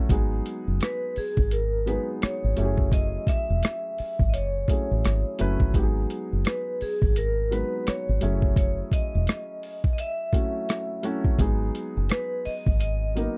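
A gritty, pitched-down boom bap drum kit underpins this introspective, soulful neo-soul and R&B excerpt at 85 BPM, its compressed, thumpy kick, hi-hat and rim click sitting up front with a swung 16th-note feel in G# phrygian. A dark, round, foam-muted electric bass punches low beneath a woody upright piano. From 0.8 seconds, a bright, ringing vibraphone carries the melody with fast motor vibrato and slapback echo over G#m7 and F#m9 chords, all captured in a dry, close 1970s-style studio sound.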